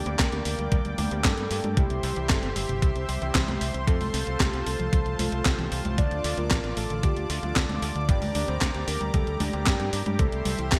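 Italo disco with a melodramatic, danceable pull, this fragment cycles through Gm, C, F and Dm as a round, dark octave-layered synth lead with vibrato, chorus and delay carries the melody over a smooth, detuned analog pad. A bright, punchy fingered electric bass and a thumpy, tape-warm electronic kick anchor the groove, while a clean 12-bit drum machine sits up front with congas, handclaps, hi-hat and a medium-tuned snare, all dressed in gated reverb. Beneath these, a very quiet detuned sawtooth unison pluck spins arpeggios with a ring-modulated edge and a clear grand piano adds background stabs, set in a moderate hall with a 1980s-style digital sheen.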